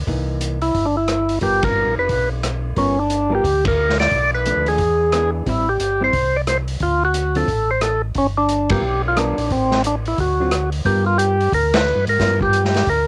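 A percussive, key-clicking tonewheel organ carries the up-front melody through a slow rotary speaker in this greasy, swinging soul jazz organ trio fragment, over a round, dark second organ playing the bass line with chorus vibrato, clean and fingered hollow-body guitar accompaniment, and a punchy vintage kit with dark cymbals in a small, pumping room, all captured as a home cassette recording with light reverb and band accents at 1.6, 3.6, 8.7 and 11.7 seconds.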